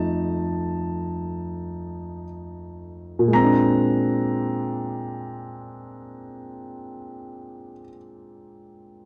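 A warm concert grand piano carries this solo jazz passage on its own from 0.0 to 9.1 seconds, its deep bass and up-front presence giving the playing a sophisticated yet playful character. The piano spans from F2 up to Bb5, moving from an opening F7 harmony to a Bb9 chord that arrives at 3.3 seconds. That change marks the start of a second section, which runs until 7.4 seconds. The sound is dry and close, in the manner of a 1970s studio recording, touched by light reverb. The recording is a short cut from a longer piece.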